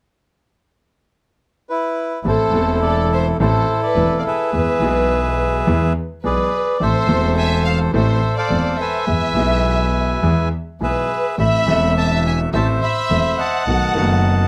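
Melancholic and sultry, this tango in A harmonic minor moves at 105 BPM in 4/4 with a rubato feel, the bandoneon stepping in alone at 1.7 seconds with a reedy, dark, up-front melody before the piano and double bass join at 2.2 seconds and the violins follow at 2.3 seconds. A clear concert grand piano with deep, vintage-tinged bass supplies the accompaniment, a smooth bowed double bass with vibrato anchors the low end, and a studio violin section adds an expressive, vibrato-rich second line over chords that alternate between Am and E before landing on B7. The sound is close and detailed with little reverb, and the passage is cut from a longer piece.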